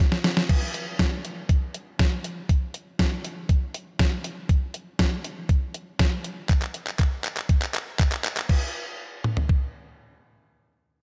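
A clean 12-bit digital drum machine sits up front in this pop fragment, its sampler-style electronic kit of thumpy kick, fat snare, hi-hat, handclaps, toms and crash cymbal setting a cool, melancholic mood in straight 4/4. A brief fill opens the piece, and a longer one runs from 6.5 to 8.5 seconds before the drums stop at 9.6 seconds. The tape-warm samples come through a dry, gritty recording touched by light reverb and digital ambience.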